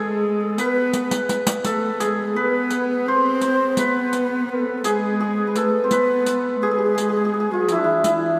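Festive and glowing, this brief excerpt from a longer Persian modal piece in a straight 6/8 sets a bright, shimmering hammered santur up front on the melody, with a warm cello's vibrato and portamento and a breathy, close-miked ney in the background weaving second lines, while a dry riq with crisp jingles enters at 0.6 seconds and plays a fill from 0.9 to 1.7 seconds, all bathed in the long echoing reverb of a vast cathedral.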